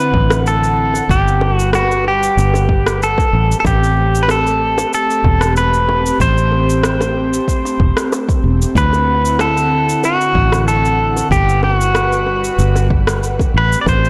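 Sunset chillout in A dorian at 94 BPM, this short cut from a longer piece moves with a smooth, warm ease and a light 16th-note swing. A clean, up-front pedal steel guitar carries the melody between F#4 and D5, its fingerpicked slide lines touched with volume swells and trailed by tape echo. Beneath it, an airy, breathy pad holds sustained chords with a slow attack and long release, its detuned layers thickened by chorus, while a round, dark fingered electric bass sits up front from 0.1 s. The rhythm comes from an overdriven electronic kick with a deep thud and an overdriven electronic cabasa and rim click, both layered and re-recorded in a large room, plus very quiet, high-tuned bongos played with soft hands. The harmony cycles through D9, Gmaj7 and Am7 under light digital reverb, and the whole recording is blown-out and overdriven.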